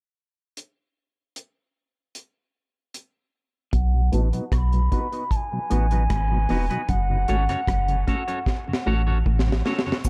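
A dry, dark reggae drum kit with a high-tuned snare and tight kick opens this spacious, deep dub excerpt at 76 BPM in F# dorian, playing alone from 0.6 seconds. At 3.7 seconds a round, up-front sub bass arrives with a breathy alto recorder melody and a very quiet twangy guitar riff at the edge of break-up. A mellow, flute-like tonewheel organ follows in the background at 3.9 seconds, and a bright, scooped clean guitar with warbly pitch drift enters at 4.1 seconds. The recorder, organ and clean guitar are steeped in dub echo as the harmony moves from B to F#m. A filter sweep and a muted part colour this stretch, a drum fill starts at 8.5 seconds, and a brief close cabasa touch caps the echo-heavy mix in a small room.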